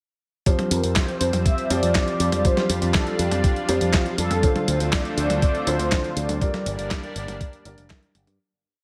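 A danceable, romantic italo disco piece in F major at 121 BPM, built on a gritty, thumpy electronic kick playing four-on-the-floor and a dusty soul sampler-style kit of closed hi-hat, fat snare, high tom and handclaps, both compressed and up front in a large room, with a punchy picked electric bass through an envelope filter galloping in sixteenth notes from 0.7 s. A lush, detuned unison pad with chorus sustains chords moving from Fsus2 to Dm7 and Gm, while a dark grand piano sits in the background with close-voiced held chords and syncopated pushes. Over the top, a mellow, brassy synth lead with chorus and digital delay shapes a motif-based melody in sentence phrases, and the whole short piece fades out from 5.8 s to its end at 8.4 s under light reverb.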